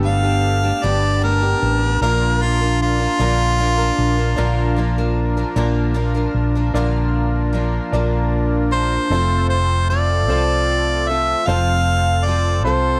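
Warm and hopeful, this slow 6/8 rock excerpt at 51 BPM sets a smooth-topped, up-front harmonica melody over shimmering picked twelve-string acoustic guitar, a round hollow-body electric bass, a woody, slightly detuned upright piano and a reedy accordion sustaining sweet chords in the background, moving from Gadd9 to Bb and then F at 9.1 seconds, with the harmonica's solo opening the piece and returning at 8.7 seconds in a dry, close 1970s-style studio sound.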